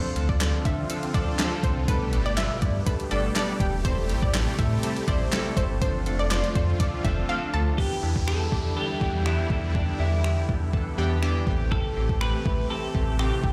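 Dance-pop at 122 BPM with a bittersweet yet confident mood, built on glossy chorused retro synth keys, huge detuned supersaw chords with phaser, and a deep, full sub bass, all breathing with sidechain pumping beneath an up-front, overdriven 80s digital drum machine of thumpy kick, gated-reverb snare, hi-hat, handclaps and finger snaps. A round analog pluck with chorus and delay carries the melody until a brief silent gap at 7.3 seconds, after which a twangy, clean twelve-string electric guitar, drenched in lush chorus and delay, takes over at 7.8 seconds alongside an electronic downlifter. The whole mix sounds as if played through a big sound system in a bare stone room, giving it an echoing, reverberant ambience.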